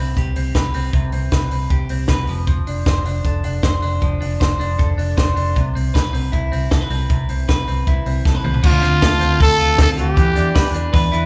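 Bright and youthful, this short cut from a longer jangly indie pop piece moves at 156 BPM in a straight 4/4, centered in C major. A clean, twangy electric guitar plays picked arpeggios throughout, its bright tone dressed in spring reverb and slapback echo. Underneath, a vintage foam-muted fingered bass gives a dark, round, amped low end, while a compact cocktail drum kit sits up front with a punchy kick, a high-tuned snare, dark cymbals and touches of toms and crash. A drum fill at 8.3 seconds leads into a new section where the harmony moves from C, F and Cmaj7 to Dm7 and Em7. There a growling trumpet enters at 8.7 seconds for a brief solo line, raspy and gritty with light vibrato and its own slapback echo, the most present voice in the mix. The whole thing sounds like a live gig heard through a venue's PA, with a touch of club ambience.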